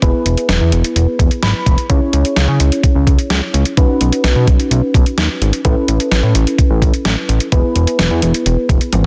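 Synth-pop in E major at 128 BPM with a straight 4/4 feel, this short excerpt from a longer piece sounds nostalgic and bright. A fat analog bass sits up front throughout, its sawtooth tone thick and sustained with a fast attack, ranging from E1 to C#3. A clean 12-bit digital drum machine with a sampler-style character plays a thumpy kick, a fat snare, hi-hat and toms, also placed prominently in the mix. A mellow FM electric piano provides softer accompaniment between B3 and B5, its round, vintage tone colored by chorus, a noise layer and a dark, warbling quality, and it adds a brief fill from 1.2 to 1.9 seconds. The chords move from E to C#m, Badd9 and Aadd9 before returning to E, all set in light reverb with digital ambience and a dense, heavily limited modern master.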